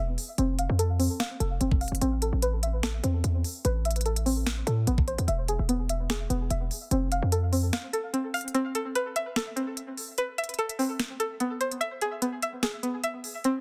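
Melancholic and hard-hitting, this trap-flavored hip hop excerpt moves at 147 BPM in a half-time feel, set in A harmonic minor with a slightly sharp tuning. A twangy, string-like resonator pluck carries arpeggios over F, Amadd9 and E chords, its sawtooth core thickened with chorus and tape echo while a filter sweep works on it from the start until 8.5 seconds. Underneath, a punchy, heavy 808-style bass with a sine body and a noise layer hits hard and decays, dropping out at 7.7 seconds for a short break. The electronic drum kit brings a knocking kick, a sharp, softly clipped snare, crisp hats and finger snaps, and the kick is muted from 8.5 seconds onward. The sound is dry and up front, with a dense, heavily limited modern master.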